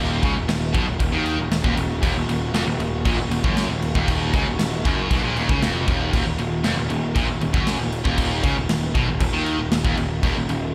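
This sounds like a live club gig heard through the venue's PA, with a small-room feel and club reverb around the band. The short cut of heavy, epic metal sits in Eb minor at 117 BPM in a straight 4/4, holding on a single Eb minor chord throughout. A growly, fuzz-overdriven picked electric bass sits up front, joined by a tight acoustic drum kit with a tight kick, a medium-tuned snare and crashing bright cymbals that enters at 0.2 seconds. Two tight, distorted picked electric guitars play the riff with slapback echo, one of them set further back in the mix. Beneath them, a very quiet, dark studio string section sustains bowed chords with a woody, soft-attack tone and gentle vibrato, adding a smooth layer to the weight of the band.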